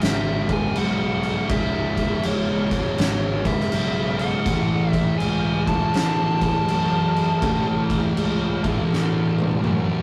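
A rough, warmly saturated rehearsal-room recording in a small room catches a heavy, brooding stoner and doom metal excerpt at 81 BPM with a swung feel. A dark, compressed fuzz lead guitar carries the melody through tape echo while two thick fuzz guitars grind out a picked riff in the background. A growly, punchy fingered bass adds overdrive, and an oversized, low-tuned drum kit with a boomy kick, fat snare and dark cymbals sits gritty and up front, all moving from C#m to A before a drum fill at 8.9 seconds.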